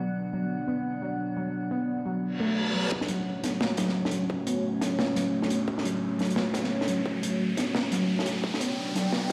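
A dark analog pad anchors this heavy, brooding excerpt of half-time drum and bass at 174 BPM in F# phrygian, its detuned square and sawtooth chords sitting up front with a sub octave, ring modulation and sidechain pumping. Beside it, a warbly, dusty pluck plays lo-fi arpeggios through chorus, phaser and dub echo, with a filter sweep across its opening, while an eerie, metallic FM drone hovers high until 2.9 seconds. A reverse cymbal comes in at 2.3 seconds, and from 2.9 seconds a riser carries a build-up through the rest of the clip. From 2.9 seconds a distorted, tape-warm electronic kick sits in the background, joined by a studio kit whose smooth, medium-tuned snare and hi-hat sound close and rolled-off. The chords move from Bm to F#m and then G, and the mix is bathed in a huge, stone-room reverb, like a big sound system playing in a bare hall.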